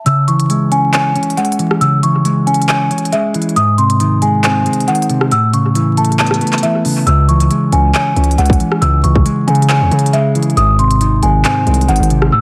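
Hip hop in a trap vein, this eerie, melancholic cut moves with a half-time feel and drifts through a minor-key progression under a haze of vinyl crackle and digital ambience. A dark, clean electric guitar sits up front with compressed, fingered accompaniment, its tone wobbling with a warbly pitch drift. Above it, a delicate, bell-like celesta carries the melody in a sweet, vintage, band-limited voice, trailed by dub echo. The electronic trap kit of hard-clipped kick, crisp hi-hats, handclaps and rim clicks has a tape-warm sheen and its own dub echo, lending the echo-heavy mix a hollow, lingering quality. At 7.1 s the opening break gives way as a heavy, aggressive distorted 808-style bass arrives up front, its sine body topped with a noise layer and a fast attack that decays.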